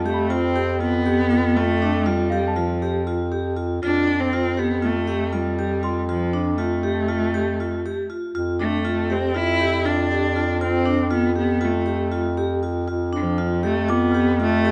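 Close, detailed microphones and light reverb frame this restless yet hopeful contemporary chamber piece in 9/8 at 238 BPM (eighths) in F lydian, where a rich, focused bowed cello with vibrato carries the melody up front over a warm, classical-style bass clarinet holding F2, while metallic vibraphone arpeggios ring with fast motor vibrato from 0.1 s and a delicate, bell-like celesta, slightly out of tune, sounds sweetly in the background until 7.4 s and returns at 13.9 s before the passage is cut from its longer whole.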